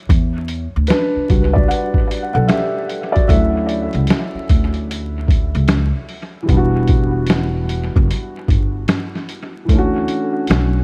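Crackling vinyl and a small, echo-heavy room frame this nostalgic, melancholic lo-fi hip hop excerpt at 75 BPM in E dorian, with a swung 16th-note feel, where a mellow, thick-felt upright piano, softened by a low-pass filter and dub echo, carries a solo through the first 6.5 seconds over Em9 and Dmaj9 chords, while a woody, growly pizzicato upright bass and a gritty, pitched-down, compressed boom bap sampler kit with a thumpy kick, medium-tuned snare and hi-hat sit up front from 0.1 seconds.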